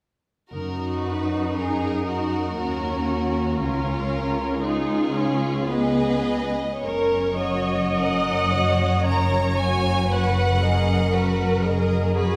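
A tender, slow romantic movement for string orchestra opens at 0.5 s with all five sections sounding together in F# major, unfolding in a rubato 3/4 at around 50-61 BPM. Clear violins carry the melody with even, smooth vibrato, while a second violin line sits beneath it with a more focused, close tone. The violas fill in the accompaniment with a lush, soft-attacked sound and expressive portamento. Underneath, the cellos are rich and intense, placed up front, and the double basses add a dark, deep foundation, also gliding with portamento. The harmony moves from F# to C#7, then returns to F# around 6.8 s before settling on G#m7 over an F# bass, and the melody drops out at 11.6 s while the other parts sustain to 12.4 s. A wet concert-hall reverb places the ensemble further back in the room, giving this excerpt, cut from a longer piece, a spacious, tender glow.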